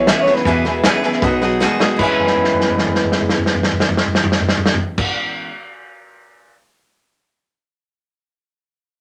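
A lo-fi, muffled drum kit sits up front in a moderate club reverb on this short, upbeat and rollicking rockabilly cut, its dark cymbals and tight kick marking a fill from 1.6 to 2.0 seconds and another from 2.2 to 5.0 seconds. Two slightly broken-up electric guitars through a small old amp split the duties: a bright, twangy one carries the melody while a darker one plays the riff, over a full-bodied picked steel-string acoustic guitar complete with finger squeak. A woody, thumpy upright bass and a jangly, boxy tack piano tucked in the background round out the accompaniment.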